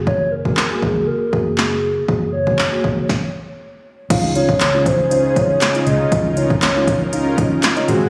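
Heard through a phone in the room with light reverb and a digital ambience, this carefree, euphoric dance-pop excerpt at 119 BPM in Db major sets a punchy, up-front deep house drum kit of kick, snare, smooth hi-hat, handclaps and crash under a round, foam-muted vintage bass and deep, nasal chord stabs that pump with the sidechain, while a hollow, woody clarinet-like synth lead with chorus, vibrato and delay carries the melody, a break arrives at 3.1 seconds, and a soft, detuned supersaw enters with sustained chords at 4.1 seconds as the harmony moves from Gbadd9 to Dbadd9.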